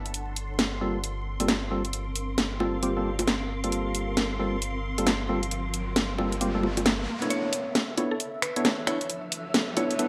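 A silky string machine and a blurred, cloudy granular pad open this late-night, skippy two-step garage excerpt at 134 BPM, resting on a round, deep dub sub bass under a Gm11 chord, before an up-front, tape-warm drum kit of bongos, finger snaps, hi-hat and a cracking snare with gated reverb joins alongside hollow, dark organ stabs treated with chorus and delay. An electronic riser enters at 4.9 seconds, the sub bass falls away, and at 7.3 seconds the harmony shifts to Bm11 as a woody, mellow FM pluck takes the melody into a build-up. The bright 1980s-style digital production carries a moderate plate reverb and vinyl crackle, with the groove swung at 62% on the sixteenths.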